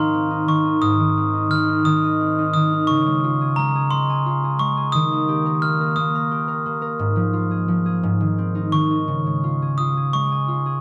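A bell-like glockenspiel played with hard plastic mallets carries a high, metallic melody from the first moment, over a fingerpicked concert harp that rings out beneath it, both sitting up front in a dry, close 1970s-style studio sound with a small room ambience. This innocent, sleepy children's lullaby moves in 6/8, its warm harp accompaniment moving through a chord progression. At 9.1 seconds the piece turns to a new passage before this short cut from a longer piece ends at 10.8 seconds.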